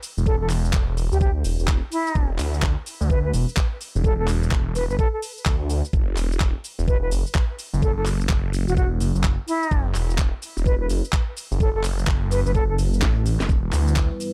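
A phased, detuned saw bass anchors this gritty, aggressive bass house excerpt at 127 BPM in E minor, its thick, swirling tone saturated with overdrive and pumping against an up-front, knocking electronic kick, while a garage kit of cracking snare, metallic hats, handclaps and cabasa swings on the 16ths. An airy silver concert flute with vibrato and delay carries the melody until 12.8 seconds, as the harmony moves from open ground to Esus2 at 5.9 seconds. After a drum fill, a deep, moody analog pad with lush chorus arrives on Em at 13.5 seconds, all within a dry, dark mix.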